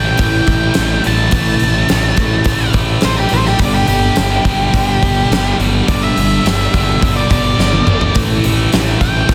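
A dense, heavily limited modern mix sits in a small room ambience, with a big acoustic rock kit up front whose fat snare and punchy kick enter at 0.2 seconds and break into a fill at 7.6 seconds. In this restless, cathartic stretch of quiet-loud alternative rock at 106 BPM in 4/4, a dark octave-fuzz lead guitar plays a solo melody through analog delay. Beneath it sit a growly, overdriven fuzz bass, a double-tracked high-gain guitar riff, and a boxy parlour steel-string acoustic picking arpeggios in the background with audible finger squeak, all moving from A5 to G5 and back to A5 at 8.2 seconds.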